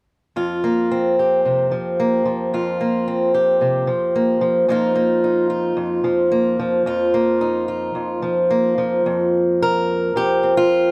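Hopeful and nostalgic, this short folk passage, cut from a longer piece, features a single fingerpicked acoustic archtop guitar playing alone from 0.4 to 10.9 seconds. The tempo sits at 111 BPM in a straight 4/4, and the guitar ranges from F2 up to Bb4. Its harmony opens on Fsus4, moves to Ebsus2/F at 4.7 seconds, and returns to Fsus4 as a new section begins at 9.1 seconds. The archtop has a warm, up-front presence, with finger squeak audible on the strings. Close, detailed microphones and very little reverb keep the sound intimate and dry.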